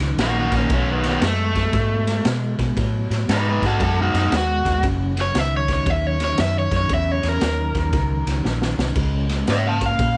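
Electric blues shuffle at 116 BPM in F# mixolydian, gritty and swaggering with a 65% swing, where an overdriven semi-hollow guitar plays a picked, up-front solo over a bright, twangy, slightly broken-up riff guitar through a small old amp with harmonic tremolo, a dark, round, foam-muted vintage fingered bass, and a raw, saturated garage kit of punchy kick, medium-tuned snare, ride and crash in a pumping small room with a rolled-off top, which drops a fill at 8.4 seconds in this cut from a longer piece.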